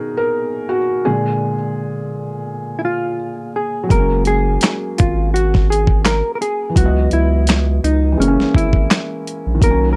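Under a light reverb, this nostalgic, mellow lo-fi hip hop excerpt in F# major at 84 BPM with a swung 4/4 feel opens on a soft, felt-muted upright piano with cassette-tape character and audible action noise, joined at 2.8 seconds by a dark, clean hollow-body jazz guitar carrying the melody, before a deep, saturated sub bass and a gritty, overdriven sampler-style soul drum kit with a thumpy kick, snare, hi-hat and handclaps arrive at 3.9 seconds under chords moving from Bmaj7 through F#add9 and C#m11 to F#9.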